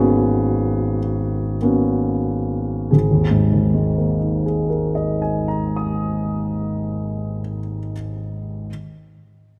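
Wistful and nocturnal, this short passage cut from a longer classical work is an impressionist solo piano piece in a slow, flexible 6/8 that drifts with rubato. A clear grand piano carries everything alone from 0.0 to 8.7 seconds, ranging from deep G#1 bass up to high D#6. Its tone is intimate and polished, sitting up front with long sustain and audible action noise that brings the listener close to the instrument. The opening section slows as it settles on a G#m11 harmony, and at 2.9 seconds a second section opens on a suspended G#sus2 colour. A moderate concert hall reverb lends a gentle sense of space around the intimate playing.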